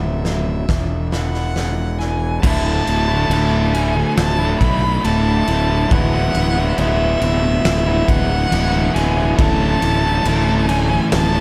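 Post-rock in a hopeful, cinematic vein, this short cut from a longer piece opens with a clean electric guitar picking compressed arpeggios in the background, colored by analog chorus and tape echo. Above it, a single bowed violin carries an expressive melody with a soft attack, vibrato and portamento, its rich tone trailed by tape echo. Up front, a fingered electric bass with a round, fuzzy, overdriven tone anchors the low end. A huge arena drum kit, natural and roomy, enters at 0.2 seconds with bright cymbals, a fat snare and a punchy kick. At 2.4 seconds the arpeggios stop and two overdriven guitars take over with picked riffs: a darker, compressed one more prominent, and a crunchy one sitting further back. The production is dark and warm with little reverb, keeping the whole sound close and weighty.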